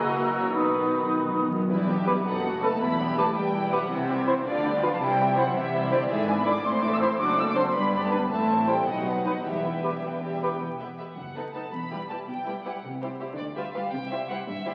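A 6/8 metre drives this quick, spirited classical-period orchestral passage, cut from a longer work, where a focused, clear chamber violin section carries the melody over a lush studio violin section, a mellow cor anglais, a pure small flute group and a punchy clarinet playing second lines. Beneath them a rich viola section supplies accompaniment, a French horn section holds sustained chords, and an expressive cello section joins a background double bass section on the bass, while hard-mallet timpani open with a fill at 0.5 seconds and return near 9.5 seconds. The woodwinds and horns fall away by about 10.5 seconds, and the whole is heard through a wet scoring-stage reverb on a very old 78 rpm record with audible crackle.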